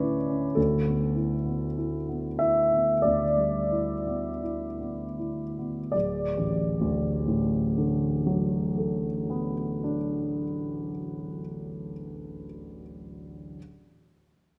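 A warm grand piano plays alone and up front in this short cut from a longer impressionist classical piece, its present tone and long sustain ringing through a wet scoring-stage reverb that lingers for 1.9 seconds. The mood is dreamy and serene, set in D major at a slow, rubato 37-55 BPM in 4/4. The piano ranges from a deep D1 up to E5, opening on a Dsus2 chord before moving to Em7/D as the first section gradually slows down. At 5.9 seconds a second section arrives on a D6 chord, carrying the calm, serene atmosphere forward. The piano sounds until 13.6 seconds, its sustained resonance blooming into the spacious scoring stage.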